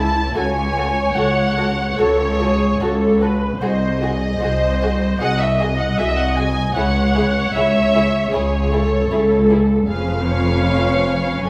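A veiled, con sordino violin section carries the melody up front, its lush vibrato shaping a solemn, melancholic line in the upper register. This is a slow romantic movement for string orchestra in 4/4, played with a flexible rubato feel and tuned slightly below standard pitch at A4 = 439 Hz. A second group of muted violins sings a lower inner line beneath it, while the violas fill in the accompaniment with a soft attack and a shadowy, subdued colour. Cellos and double basses share the bass, the cellos smooth-topped with only light vibrato and the double basses rounder and fuller. All five muted sections play together from start to finish across the 11.5 seconds, set in a reverberant stone room that adds a sombre halo to the ensemble. The passage is cut from a longer piece.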